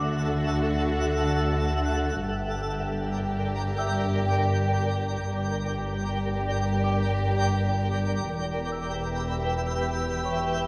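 This uneasy, tense cinematic suspense cue, cut from a longer piece, opens with its full ensemble at once. Up front, a twinkling granular texture holds sustained chords with a slow attack, long release, sparkling octave-up shimmer and its own built-in reverb. Beneath it, a rich cello section and a lush double bass section carry the low line with bowed vibrato, the cellos smooth and even, the basses expressive. A warm symphonic violin section plays a focused melody between F#4 and G4, sitting lower in the mix than the shimmering pad, while a worn celesta in the background adds delicate, bell-like notes from soft felt hammers, mellow and slightly out of tune. At 79 BPM in straight 4/4, the harmony moves from Dadd9 to Gm at 2.3 seconds and settles on Em at 8.3 seconds, with the ensemble framed by a moderate scoring-stage reverb.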